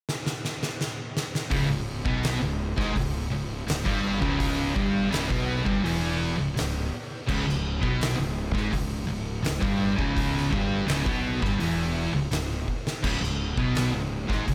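An oversized, low-tuned acoustic drum kit sits up front in this brooding, sludgy stoner and doom metal passage, cut from a longer piece. Its fat snare, punchy kick, crash cymbal and hi-hat ring through a bright stone room with a pumping room sound, and the whole kit is saturated and gritty. The drums open alone with a fill from 0.1 seconds, and the riff enters at 1.5 seconds. That riff is carried by a double-tracked, picked distorted electric guitar and two thick fuzz guitars set in the background, one warm and one dark. Beneath them a fingered electric bass, overdriven into a round fuzz tone, holds the low end. The drums play another brief fill at 12.7 seconds, and the small room ambience adds a close, enclosed feel to the straight 4/4 pulse.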